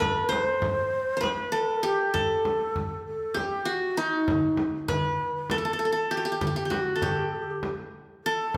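A lopsided 7/8 pulse drives this short cut from a longer Turkish makam ensemble piece, moving with a straight, stately stride that still feels festive. The qanun carries the melody up front, its plucked triple strings sounding bright-edged and glowing. Alongside it, a low ney plays a second line in the same register, its end-blown reed cane tone breathy and soft in attack, with a gentle vibrato. A small frame drum keeps time throughout, struck with hard hands and given a compressed, slightly saturated snap. At 4.3 seconds a clay-shelled darbuka joins with soft hands, its small, high voice vintage and band-limited, before dropping out at 7.8 seconds. The group plays live together in a large studio, wrapped in a generous, wet reverb.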